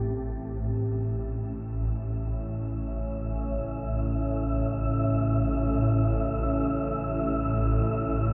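Desolate and ominous, this dark ambient drone hangs in free time in A major, a short stretch lifted from a longer piece. Up front sits a swarming drone in the low register, its detuned, wave-folded tone tense and evolving with a granular grain. Above it a deep, moody pad holds sustained chords, its sawtooth body thickened by a sub octave and softened by chorus. From about 0.3 s a breathy, wind-like tuned noise texture drifts in higher up, mellow and airy, sitting lowest in the mix. Every layer blooms with slow attacks and long releases inside a huge ambient reverb, giving the dark, warm production a vast, shadowed space.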